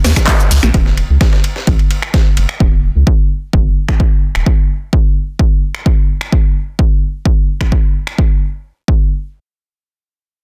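A straight pulse drives this gritty, driving acid house fragment, with an overdriven, punchy electronic kick sitting up front from 0.2 seconds. Underneath, a round, deep analog bass with a wave-folded edge pumps steadily, alongside a dusty soul sampler-style kit whose compressed hats, ride and fat snare are thinned by filtering and also pump. That kit drops out at 2.5 seconds and the bass stops at 4.4 seconds, leaving the kick and a punchy analog drum machine of snaps, claps, rim clicks, shaker, hats and a softly clipped snare in a short room. The whole sits dry and densely limited.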